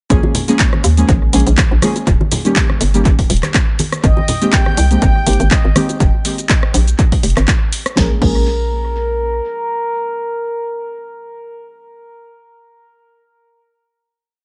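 A hollow, knocking FM bass anchors this moody, late-night deep house piece at 122 BPM in Bb dorian, its bouncy, syncopated riff pumping up front against the kick until 9.4 seconds. An electronic kick drives a four-on-the-floor pulse with tape-warm punch, joined by an analog drum machine's programmed hats, shaker, rim clicks, claps, snare backbeat and crash, both re-recorded in a large room and stopping at 8.4 seconds, while close, dry congas and bongos add soft-handed syncopation in the background with tape echo. Deep, full-bodied chord stabs built from detuned triangle, sawtooth and sine tones carry a filter sweep, chorus, cassette-tape colour, tape echo and sidechain pumping through the progression from Bbm7 to Eb7, Abmaj9 and Fm, then ring out on a final Bbm7 chord. From 4.0 seconds a round, horn-like synth lead with vibrato, chorus and 12-bit sampler grit sings hook phrases, briefly shadowed by a very quiet, lush, dark violin section holding a high note. 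The echo-heavy mix sits under light reverb with a soft, rolled-off top, giving the whole a hazy, nocturnal glow.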